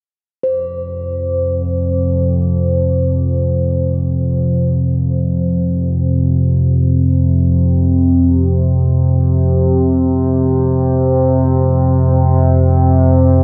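An up-front analog drone leads this desolate dark ambient fragment in free time. It arrives with a slow attack at 0.7 s, sustaining an evolving, nasal blend of sawtooth and pulse-wave tones with pulse-width modulation and chorus over F5, shaped by a long release. Beneath it, from 0.4 s, a quartz singing bowl struck with a suede striker rings pure and meditative at C5 with slow beating, all set in a huge ambient reverb with a dark production.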